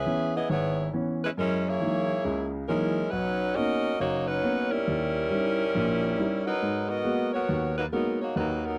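Jazz in G# minor at 137 BPM, swinging and sultry in 4/4 with a 66% swing on the eighths and tuned slightly flat to A4 = 438 Hz, this short passage is cut from a longer piece. A clear saxophone section carries the melody up front with ensemble vibrato, while a warm baby grand piano with short sustain comps beneath it through C#m7, F#13, Bmaj9 and D#7b9 before settling on G#m9. The sound is dry and close, like a 1970s studio session, with little reverb.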